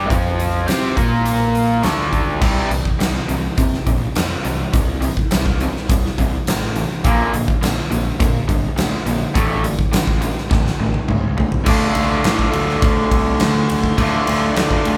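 Swaggering and brooding, this classic rock passage in D minor moves at 104 BPM in a straight 4/4, cut from a longer piece and played live by a band in one room with light reverb. Up front, a raw, double-tracked garage guitar drives the riff with gleaming overdrive, while a fuzz-drenched, warm picked electric bass growls beneath it and a huge arena drum kit brings a fat snare, a punchy kick and brilliant cymbals ringing through a hall-like space. The chords move through C, Bb and Asus4 before a drum fill at 10.5 seconds lands on D minor at 11.7 seconds.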